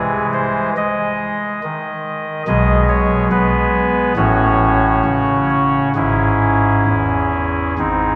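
A chamber organ with a soft reed oboe stop opens alone, its reedy solo voice carrying a chiff and sitting up front, spanning from G#1 to D#5 in a grave, dark classical chorale in C# minor. The tempo hovers around 66-72 BPM in 4/4 with a rubato feel, as the harmony moves from G# through G#m/B and F#m/A to C#m/G# at 6.0 seconds. A resonant church reverb with a long 3.6-second decay surrounds this brief 8.2-second passage, which is cut from a longer piece.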